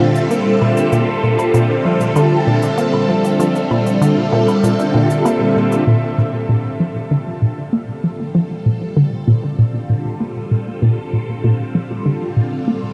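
A squelchy, resonant blip pluck carries an up-front riff through this luminous, expansive piece of ambient, sequencer-driven space music at 97 BPM in Bb lydian, beside a swirling, vintage phased string machine holding sustained chords that fades in from 5.9 s. In the background, a bubbling stepped-filter texture and a tape-toned shaker and woodblock with delay add detail until about 5.9 s. The dark production sits in a huge, wet reverb with a faint mains hum, and the clip is cut from a longer piece.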